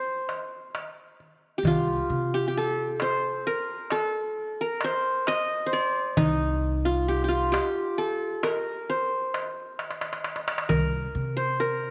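Turkish makam ensemble music in 10/8, longing and melancholic, cut from a longer piece: a bright-edged, plectrum-plucked qanun carries the melody up front from the start, a crisp metal-shell darbuka joins at 0.3 s and plays a fill at 9.8 s, and a woody, thumpy pizzicato upright bass enters at 1.6 s, the ensemble sitting in a moderate plate reverb with a rounded-off top end.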